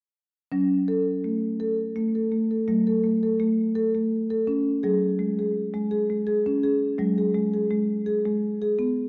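A soft-mallet marimba with a woody, round, mellow tone sits up front, playing arpeggios from 0.5 to 9.1 seconds in this gentle, meditative world piece in a lilting triple metre with a light swing. The harmony moves from a minor chord to a pause in the chords at 4.8 seconds, then to a suspended chord at 7.0 seconds. The production is dark and bathed in a wet echo-chamber reverb, and the fragment is cut from a longer piece.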